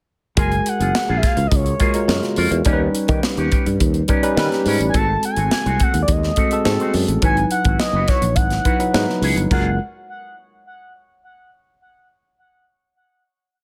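A smooth synth lead of sawtooth and triangle tones, with a soft attack, vibrato, chorus, phaser and delay, carries a motif-based melody of call phrases through this upbeat, urban 1980s jazz-funk pop piece at 105 BPM in F# major. Beneath it, a worn, slightly out-of-tune tine electric piano plays lightly overdriven syncopated chord stabs with grace notes. A dark, clean electric guitar with an envelope filter picks a crisp sixteenth-note riff, a growly fretless bass weaves agile syncopated lines with chromatic approach notes, and a tight, dry funk kit with gated reverb sits up front with a sixteenth-note studio groove, as the verse moves from F#maj9 through D#7b13, G#7b9 and C#m11 to a final F#maj9 chord at 9.5 s, bathed in studio reverb.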